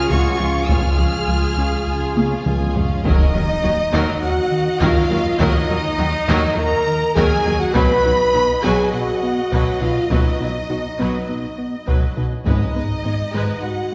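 A roomy, distant scoring-stage sound frames this vast, relentless hybrid orchestral and electronic film cue in Eb minor at 102 BPM, where rich vibrato violins carry a background melody over a second violin line, lush viola accompaniment, mellow sustained French horn chords, very quiet cello and double bass, a dark, very quiet round pluck arpeggio, a smooth sawtooth synth bass riff in the background and hard-stick taiko drums, with a drum fill at 2.2 seconds leading into a huge, bright impact at 3.0 seconds as the harmony moves from Db to Eb minor.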